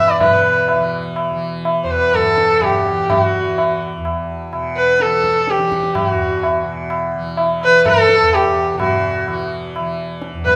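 Longing and meditative, this short Hindustani classical passage in raga darbari on E moves in 3/4 at 126 BPM and gradually speeds up over its 10.6 seconds, tuned slightly high with A4 at 445 Hz. A single bowed sarangi carries the melody between F#4 and E5, sitting up front with a rich, smooth and even tone, light vibrato, gliding portamento and the halo of its sympathetic strings, though it also carries a slightly distant quality. Beneath it, a softly plucked tanpura holds a buzzing, shimmering drone from E2 to E3, set well back in the mix. The low-tuned tabla enters at 0.1 seconds, its short-ringing strokes sounding compressed and saturated. A recital hall reverb with a 1.4-second decay wraps the ensemble, giving the fragment, cut from a longer performance, a spacious, contemplative air.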